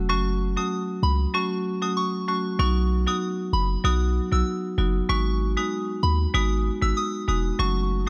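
Hypnotic and bouncy, this short dancehall excerpt moves in a straight 4/4 groove that changes character at 2.6 seconds. A deep, boomy 808-style bass with a sine-like tone sits up front, its fast attack decaying into a mellow low end. Beside it, a marimba struck with hard mallets plays a percussive, vintage-sounding accompaniment, its band-limited tone also placed close and forward. Above them, a soft synth bell carries the melody in a high register from 0.1 to 7.7 seconds, its pure, full-bodied FM sound warbling gently through chorus and delay. The harmony steps from F#m to B and then to G#m7, and a light studio reverb lends the mix a modest sense of space.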